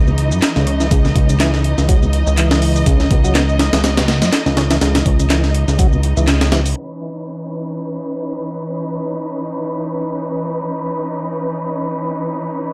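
Energetic, funky breakbeat cut from a longer piece, built on a gritty, compressed sampler-style drum kit with a thumpy kick and high-tuned snare up front, alongside filtered electronic shaker and handclaps and a fat, nasal, detuned analog bass. In the background a lightly overdriven tonewheel organ plays a riff through slow rotary speaker, chorus vibrato, tape echo and 12-bit sampler grit, while a lush bowed string section holds sustained chords with sidechain pumping. After a band accent at 6.3 seconds, the drums, bass and organ drop out near 6.8 seconds and the strings carry on alone under a filter sweep until 12.7 seconds, all in a dry, gritty hardware-recorded sound.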